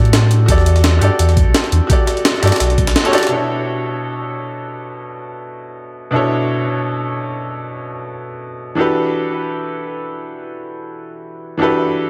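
A brilliant, up-front baby grand piano accompanies this dreamy, rolling liquid drum and bass excerpt through analog delay and a plate-reverb haze, while a deep sine-and-triangle sub bass with octave, a thumpy electronic kick, a gritty, pitched-up breakbeat kit with a high-tuned snare and a filtered jungle kit in the background play until a band accent at 3.0 s, after which the piano continues alone from 3.3 s over Bm11 and Em11 chords.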